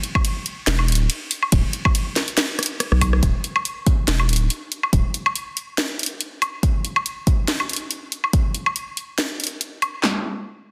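Brooding and heavy, this deep dubstep passage moves at 141 BPM in 4/4 with a half-time feel and a 55% swing on the sixteenths, cut from a longer piece. It opens on a drop, with a garage drum kit of handclaps, hi-hat, ride cymbal, rim click, a cracking snare and woodblock sitting up front alongside a layered deep house kit whose deep kick, punchy snare and handclaps are overdriven and re-recorded in a large room. A saturated sub bass enters at 0.7 seconds, a thick, sine-based tone with a fast attack that sustains between D1 and B1 before falling away at 5.0 seconds. A drum fill at 2.6 seconds leads into a new section at 3.2 seconds, where the two drum kits carry on through the final seconds. Studio reverb colours both kits, the overall space is lightly reverberant, and the master is dense and heavily limited in a modern style, tuned to A4 = 444 Hz.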